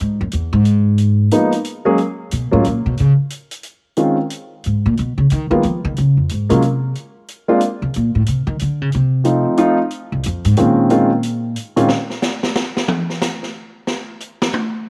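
A lightly reverberant, up-front sound frames this late-night, moody jazz piano trio excerpt in swung 3/4 at 181 BPM, settling into Bb minor from 4.0 seconds as a woody, thumpy pizzicato upright bass solos from the start, a dark, mellow grand piano with long sustain carries the melody from 1.3 seconds, and an open acoustic drum kit of hi-hat, medium-tuned snare and toms takes a brief solo at 11.9 seconds after the bass and piano stop.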